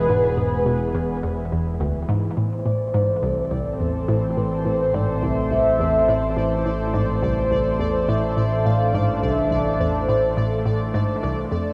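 Ambient, sequencer-driven space music at 105 BPM in A harmonic minor, this hypnotic, cosmic excerpt sets a mellow, horn-like synth lead with vibrato over a lush, up-front unison pad, a hollow, bouncy square pluck riff with phaser and delay, and a fat analog bass, moving from E to Am at 2.4 seconds as a pulsing, bright gated texture enters at 2.7 seconds, all bathed in a wet spring reverb with the soft grain of a home cassette recording.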